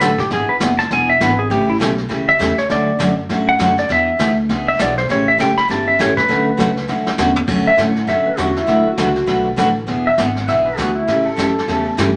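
This cheerful, swinging western swing piece opens with a twangy, clean lap steel guitar carrying the melody up front at 200 BPM in D major. Its compressed slide tone sits over a bright, full-bodied acoustic guitar playing picked accompaniment, complete with audible finger squeak. Beneath them, a woody pizzicato upright bass and a vintage brush drum kit with dark cymbals, a punchy kick and a rolled-off top keep the swung 4/4 moving through E7, A7 and Dmaj7 changes. A drum fill arrives at 6.9 seconds as the lap steel solo ends, and at 7.7 seconds a pedal steel guitar enters with a fingerpicked solo marked by volume swells, while the harmony moves to Bm7, E7 and A7. The acoustic guitar plays on to 12.1 seconds, and a wet studio reverb with a 0.7-second decay gives the whole mix a glossy sheen.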